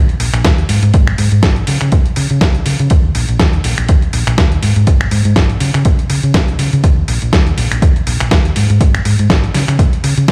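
A swung sixteenth-note groove in 4/4 drives this nostalgic, groovy filtered disco house excerpt, with a dark, round hollow-body electric bass opening at 0.0 s and pumping under sidechain compression. A gritty, compressed sampler-style soul kit of finger snaps, hi-hat and a medium-tuned snare joins, with a punchy, tape-warm analog kick entering at 0.4 s. The whole mix sounds played back on a big sound system in a bare stone room, giving the otherwise dry parts a stone-room reverb.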